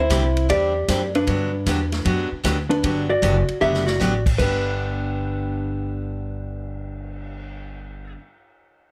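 Swinging and playful, this short western swing cut from a longer country piece moves at 154 BPM in G major with a firm swing feel. A dark, clean, compressed hollow-body jazz guitar carries the melody up front over a woody, thumpy gut-string upright bass and a bright, fresh-stringed picked acoustic guitar. A natural-sounding big-band drum kit with a punchy kick adds ride, hi-hat and crash, drops a fill at 3.6 seconds, and stops at 7.4 seconds, while the harmony lands on G at 4.4 seconds, all in light reverb.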